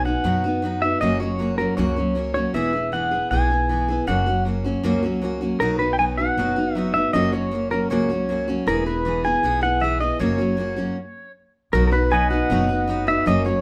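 A straight 4/4 feel drives this short, nostalgic honky-tonk and classic country passage, cut from a longer piece. Up front, a clean, compressed pedal steel guitar carries a heartfelt melody with slide and volume swells, while a full-bodied dreadnought acoustic guitar, also up front, picks the accompaniment through a B, F#, E and F# progression. Beneath them, a woody, thumpy upright bass on gut strings plays pizzicato. The band stops together from 11.0 to 11.7 seconds before the progression returns on B, and at 12.1 seconds a second, bright and twangy pedal steel adds sustained chords. A moderate large-studio reverb gives the ensemble a sense of space.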